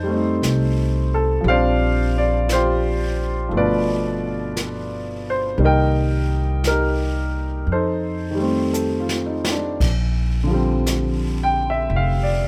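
A warm upright piano with long sustain and a woody, pizzicato upright bass open this excerpt of an intimate, late-night jazz ballad in Bb major, both up front in a close, dry sound, with a brushed drum kit joining at 0.4 s. At a slow 58 BPM with a swung feel, the chords move from F7 through Bb69, G7 and Cm7, while the kit's dark cymbals and boomy kick sit further back in the mix. A drum fill from 8.7 to 9.8 s leads into a return to Bb69 for the closing bars.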